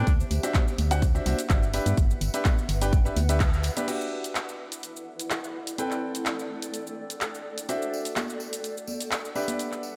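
Lightly reverberant and pumping, this bittersweet, soulful piano house fragment in E minor at 126 BPM sets a clear, boxy grand piano riff with dub echo over a mellow granular cloud pad, while a hollow, organ-like FM bass and a punchy up-front kick drive the opening until about 3.5 to 3.7 seconds, bright-hatted house drums with claps, cabasa and crash run throughout, and ringing tambourine and congas sit in the background until 3.9 seconds before returning at 7.7 seconds.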